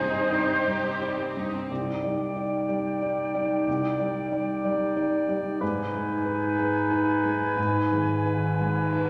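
Sorrowful and bittersweet, this cinematic fragment in a rubato, uneven 3/4 opens with a lush violin section carrying the melody over a second, smoother violin line and a distant viola section, which drop out by 1.7 s, when a warm clarinet and an up-front oboe enter on second lines beside an airy, bright flute, while a felt-muted upright piano with audible action noise and a ringing, thumb-plucked harp play throughout, all set in a wet concert hall reverb.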